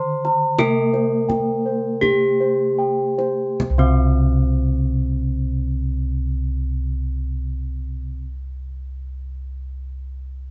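A bright, dry bronze metallophone carries the melody close and up front, struck with a horn mallet, while a lower metallophone with paired tuning supplies shimmering beats and mellow bossed gongs played with padded beaters ripple through round arpeggios. In this serene Javanese gamelan passage, moving in a straight 4/4 at a very slow 36-45 BPM that slows further over the opening seconds, a tight kendang played with hard hands joins at 0.2 s and drops out at 4.4 s. Dark, smooth bossed gongs anchor the bass from 0.6 s, all heard in a moderate studio reverb as a band playing live together in one room.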